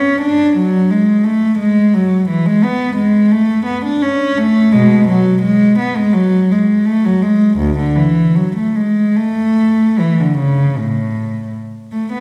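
Recorded in a resonant recital hall with a wet reverb tail of about 1.6 seconds that places the listener further back in the room, this short classical excerpt presents a baroque-style suite movement for solo cello in A major. One bowed cello plays alone from 0.0 to 12.2 seconds, its warm, intimate tone carrying light vibrato, a soft attack and an airy bow while sitting close and up front, ranging from D2 to D4. The 4/4 pulse moves around 72-88 BPM with a flexible rubato feel, giving the music a radiant, dance-like lilt.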